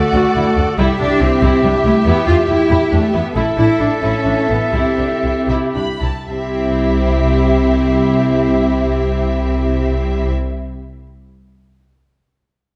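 Up-front, bowed double basses and intense, clear cellos anchor this soaring, heroic adventure film-score excerpt in 6/8 and C major at 73-94 BPM, where a distant, smooth violin section carries the melody over a bright clarinet, a pure silver flute and lush background violins on second lines, sustained French horn chords and focused violas, all set in a dark, warm scoring-stage reverb and easing into a slowdown from 2.7 to 6.3 seconds.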